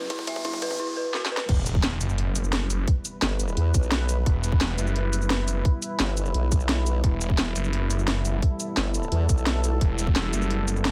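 A tense, aggressive excerpt of dark technical drum and bass in E minor at 173 BPM opens with a thick, swirling phased saw bass, a riser and impact in the background, an eerie inharmonic synth bell arpeggio under a filter sweep, a deep, moody ambient pad and a drum fill from the tight electronic kick and cracking-snare kit, building up until the drop at 1.5 seconds, where a chorused formant-sweep wobble bass wobbles up front from 3.2 seconds.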